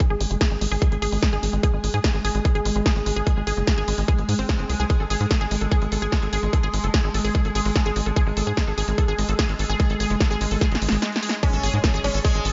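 Alien and intense, this psychedelic trance cut drives along at 147 BPM in a straight 4/4, built on a tight, up-front electronic kick, an overdriven techno kit with a punchy snare and hi-hat, and a saturated sawtooth sequencer bass. A lush, detuned unison pluck riff with diffuse ambient delay and an evolving, morphing wavetable pad with chorus sit over a rootless F#madd9, both pumping from the sidechain, while a filter sweep on the arpeggio carries toward a drum fill and a brief break. At 11.4 s the drop arrives with a bright, buzzing sitar line, phased and shimmering, joined by a very quiet electronic impact.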